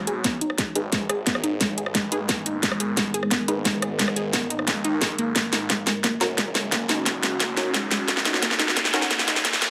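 Dark and mechanical, this technical drum and bass excerpt builds throughout on a drum fill and filter sweeps, with an up-front dubstep kit of huge snare, rim click and metallic hats over a punchy background kick. A swirling phased saw bass and a moody ambient pad sit beneath a lush, sidechain-pumping unison pluck arpeggio with 12-bit grit and delay. Muted dub chord stabs come in at 0.8 and 6.2 seconds, and a very quiet riser enters at 6.1 seconds.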